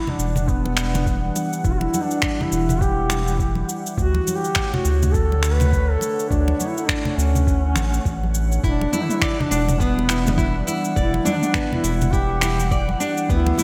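This organic downtempo excerpt opens with a mellow, distant duduk singing a folk-style melody with vibrato and a soft attack, its notes trailed by delay, over a warbly, nostalgic pad of detuned sawtooth and triangle tones that breathes with sidechain pumping. Set in E dorian at 103 BPM with a swung 16th-note feel, the piece moves from Em9 to Dmaj7 and back to Em9, carrying an earthy, dreamy mood. Within the first second, close, dry congas sit in the background, while a round, deep analog bass pumps up front. An electronic kit of finger snaps, shaker and toms is soon joined by a gritty, thumpy sampled kick that carries a large-room sheen. At 8.6 seconds a full-bodied, fingerpicked nylon-string guitar enters with arpeggios touched by analog delay, and the whole mix floats in a lush hall reverb.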